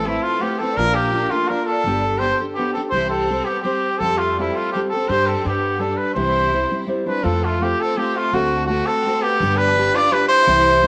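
Mexican folk mariachi in a proud, romantic 3/4 at 167 BPM, cut from a longer piece, with a clear, distant classical-style trumpet singing the melody up front while a lush, bowed violin section with vibrato carries a second line in the background, a full-bodied fingerpicked nylon-string guitar with audible finger squeak fills the accompaniment, and a woody, thumpy pizzicato upright bass anchors the low end, all bathed in an echo-chamber reverb as the music moves from C major to F major at 7.3 seconds.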